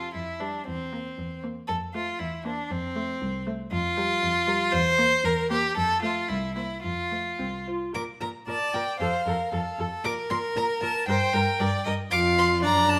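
In a quick 2/4 at 116 BPM with a rubato feel, this spirited, graceful classical-period movement for string quartet opens in F major and moves to Bb major at 7.9 s, in a short passage cut from a longer piece. The first violin carries the melody with a rich, smooth, even vibrato tone, while the clear second violin sits close and up front on its own line. Beneath them, the warm viola adds expressive accompaniment with portamento, the focused cello anchors the bass, and a wet stone-room reverb surrounds the bowed quartet.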